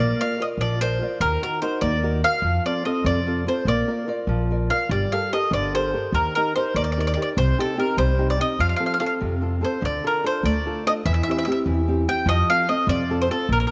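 Sunny and romantic, this short fragment of an Italian folk serenade sways in 6/8 at 98 BPM, with the chords moving from Bb through Ebm and F toward Gmadd9, Cm and Dm before settling on F. A bright, picked bowl-back mandolin with doubled strings carries the melody up front, while a small, boxy nylon-string guitar fingerpicks the accompaniment and a woody pizzicato upright bass holds the low end. All three acoustic instruments play together throughout, set in a moderate plate reverb.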